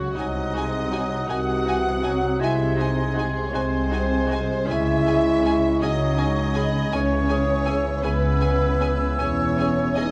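A slow, rubato 12/8 pulse at 53 beats per minute carries this melancholic, yearning classical passage in C# minor, cut from a longer piece and moving from G#7/B# to C#m and then C#m/E. A background violin section holds the melody on a single high G#5 while a smooth, even second violin section, an airy silver flute and a clear, soft-attacked oboe sing second lines above mellow, distant French horn chords. Very quiet violas and a lightly vibrato bassoon fill the accompaniment, and a close, focused cello section joins an up-front double bass section in a lush bass, all bathed in a dark concert hall reverb.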